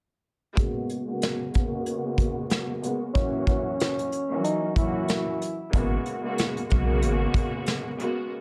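A light reverb lends this short boom-bap hip-hop fragment a gentle sense of space, and its mood is dark and reflective, with a swung sixteenth-note feel. A lush bowed string section carries the accompaniment from the outset, smooth and even with gentle vibrato, shaped by high-pass and low-pass filtering, while a filter sweep runs across nearly the whole passage. Vintage brush drums sit up front with an acoustic small-room character: a tight kick, a medium-tuned snare, hi-hat and a rolled-off top. At 3.1 seconds a growling tenor saxophone takes the melody, breathy and raspy with subtone, scooped notes and a soft attack, its filtered jazz-style line trailed by delay until 5.7 seconds. A deep, round dub sub bass then takes over the low end until 7.3 seconds, soft yet sustained with a fast attack, as the harmony returns from an F#7 to the opening G#m11.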